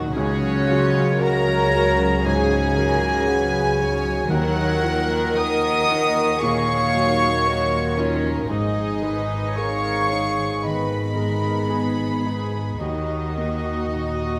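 Cinematic and sorrowful at a slow, rubato 57 BPM in Eb minor, this moving fragment sets a floating sul tasto violin melody over a felt-muted upright piano, viola section, dark woody double basses, a very quiet cello section and ringing harp arpeggios, with a background violin line, airy flute and distant oboe as second voices, background French horns holding mellow chords, and very quiet timpani sounding only from 4.3 to 5.9 s, all in a moderate scoring-stage reverb as the chords move from Dbsus4 through Ebmadd9 and Abm back to Ebm.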